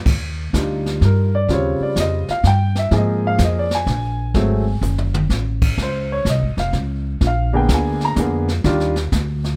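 Relaxed and sophisticated, this short cut from a longer jazz piano trio piece swings gently in three, with a woody upright piano carrying the melody as a solo from 0.5 seconds through lush chords such as Ebmaj9, Ab69 and Bb7b9. Pizzicato upright bass, thumpy and up front with steel strings, anchors the low end, while a brushed drum kit in a small, natural-sounding room adds a boomy kick, hi-hat, crash and toms, with a brief drum fill at 4.8 seconds. Close, detailed miking keeps the sound dry and intimate.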